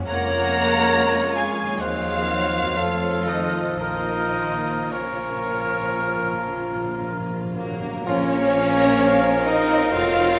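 Bathed in a wet recital-hall reverb, this slow, rubato romantic orchestral passage, cut from a longer piece, feels yearning and elegiac. A lush, vibrato-rich violin section carries the melody, with an airy, hollow flute, a dark cor anglais, a clear clarinet and a softer, intimate second violin section weaving secondary lines. Beneath them, expressive violas with portamento, a bassoon, focused cellos and rich, smooth double basses sound alongside distant French horns, mellow trumpet stabs and ringing, fingerpicked harp arpeggios. Timpani with medium mallets play a fill from 3.8 s, and at 8.1 s a very quiet, present trombone section and a tuba join the texture.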